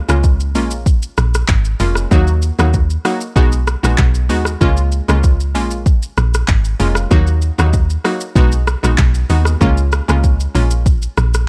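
A glassy wavetable pluck opens this sultry, hypnotic afrobeats excerpt at 0.0 seconds, its crystalline, detuned tone shaped by ring modulation, a filter sweep and chorus as it outlines chords in Eb minor. A moment later, at 0.1 seconds, a deep log drum bass and a deep house drum kit arrive together. The kit sets a straight 4/4 groove at 96 BPM with a deep kick, metallic hats, handclaps, rim clicks and shaker, its layered electronic sound tinged with tape warmth. Up front in the mix, the round, dark log drum bass hits with a fast attack and a noise layer before decaying, while the pluck sits further back. The harmony cycles through Db6, Bbm7, Ebm and B6, and the pluck stops at 10.8 seconds, leaving bass and drums to carry on until 11.5 seconds. The whole recording has a dry, gritty cassette character set in a digital ambience.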